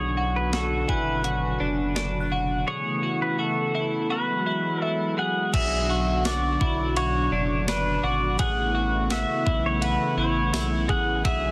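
Melancholic and haunting, this dream pop excerpt is led by an up-front pedal steel guitar, bright and twangy under slide and volume swells, over a smooth, detuned sawtooth pad holding sustained chords and a round, deep analog bass. A clean, compressed twelve-string electric guitar picks arpeggios through chorus and delay, while a glassy, crystalline FM synth bell warbles faintly in the background. From 0.5 s a sampler-style 12-bit drum machine with a thumpy kick, tape-tinged character and small-room ambience joins in, all set in light reverb and a dense, heavily limited master.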